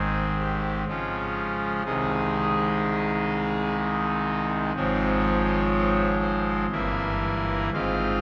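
Classical chorale-style music for solo pipe organ, solemn and grave, moving in a slow, rubato three-beat pulse through a short excerpt cut from a longer piece. The organ speaks on its trumpet stop, brassy and bright with a baroque voicing, spanning from deep bass notes up into the treble and sitting up front, while the harmony turns from major toward a darker minor colour at 4.8 seconds. A cathedral reverb with a long 5.0-second decay surrounds the sound, placing the listener further back in the vast, resonant room.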